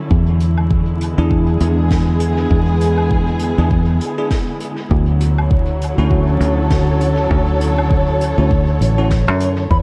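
A loosely swung 4/4 groove of deep, tape-warm electronic kick and punchy, foam-muted fingered bass with tube saturation sits under a soft, rolled-off brush kit of hi-hat, snare and woodblock touched with dub echo, in this peaceful, hazy ambient dub excerpt cut from a longer piece. Dark, bowed studio strings hold sustained chords with vibrato and portamento as the harmony moves from E7 to Dmaj9, while a bell-like tine electric piano adds background stabs through analog chorus and dub echo from 1.2 seconds. A hollow, pure concert flute appears only at 9.7 seconds, all in a light, small-room reverb over a bed of vinyl crackle.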